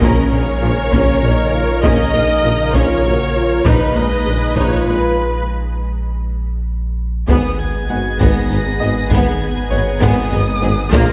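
Tense and futuristic, this slow 6/8 hybrid orchestral and electronic film cue at 66 BPM sets an expressive solo violin with portamento and tape echo over a background symphonic violin section, a close studio violin section and a lush, distant viola section, while a detuned organ-like pad with chorus, a tight French horn section, a mellow tuba, a deep sine sub bass and very quiet cello and double bass sections hold the harmony as it moves from Bbm to Abm over Bb, heavy-stick taiko and a faint, brilliant grand piano add weight and glitter, and after a break at 5.5 seconds a taiko fill leads into an Abm passage at 7.3 seconds, heard from deep in a reverberant scoring stage.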